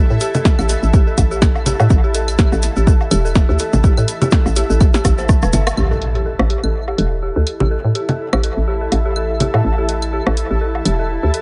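A hollow, knocking FM bass and a cloudy granular pad open this quirky, clinical minimal techno cut at 124 BPM with swung 16ths, soon joined by an eerie, inharmonic detuned synth bell with chorus and tape echo, a punchy overdriven analog drum machine of hi-hat, rim click and snare, overdriven electronic congas, claves and woodblock drenched in dub echo, a grainy cabasa in the background, and an up-front overdriven kick that stops at 5.4 s, before a drum fill and band accent lead into a background impact at 5.8 s while filter sweeps move over the drums and bell through the echo-heavy, dark-topped mix.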